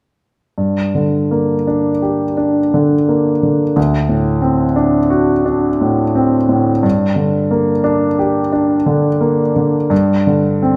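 Classical romantic nocturne for solo grand piano in G minor, mournful and yearning, moving slowly in 9/8 at 58 BPM with uneven beats and free rubato. The intimate, up-front piano plays alone from 0.6 to 10.8 seconds, ranging from D2 to G4, its long sustain and audible action noise captured naturally in a reverberant recital hall. The harmony sways between G minor and D7, settling on a bare D7 over a G bass near 9.9 seconds in this fragment of a longer piece.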